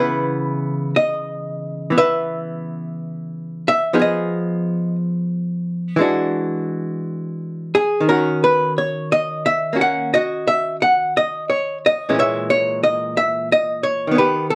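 A clean, compressed archtop guitar, miked and amplified with its hollow-body tone up front, plays alone from 0.0 to 14.6 seconds in this melancholic, intimate jazz ballad excerpt at 59 BPM in a swung 4/4, moving from C#m9 through Fm7b5, E9 and D#m7 to A#m7b5, all set in moderate studio reverb with the soft grain of cassette tape.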